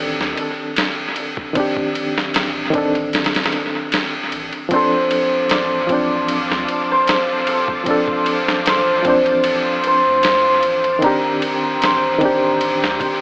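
Trip hop in D phrygian at 76 BPM with a light swing on the sixteenths, this dark, melancholic excerpt is cut from a longer piece and carries the echo-heavy character of an AM radio broadcast, set in a moderate spring reverb. From the start, a reedy, worn electric piano plays the accompaniment, slightly out of tune and lightly overdriven, with medium tremolo, 12-bit sampler grit and tape echo, over a deep, round sine sub bass sitting in the background. A gritty, pitched-down boom bap drum kit enters at 0.2 seconds, up front and compressed, with a thumpy kick, medium-tuned snare and ride cymbal passed through analog delay. At 4.7 seconds, as the harmony moves from Cmadd9/D to Dm7, a hammered, shimmering cimbalom takes the melody up front with tape echo, while a vintage sawtooth string machine voiced as cellos adds soft-attack sustained chords with ensemble chorus behind it. The progression returns to Cmadd9/D at 11.0 seconds before the excerpt ends.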